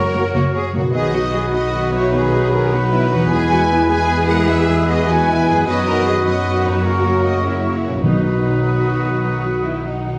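A lush violin section carries the melody with expressive vibrato and a soft attack in this adventurous, heroic cinematic passage in 12/8, cut from a longer piece. A clear oboe, an airy flute, a distant clarinet and a second, very quiet violin section add supporting lines over viola accompaniment and ringing, fingerpicked harp arpeggios. Mellow trumpet stabs, sustained chords from a tight trombone section and a background French horn section, bass lines from double basses and cellos, and a brief hard-mallet timpani entry at 8.0 s complete the sound, set in a wet recital-hall reverb.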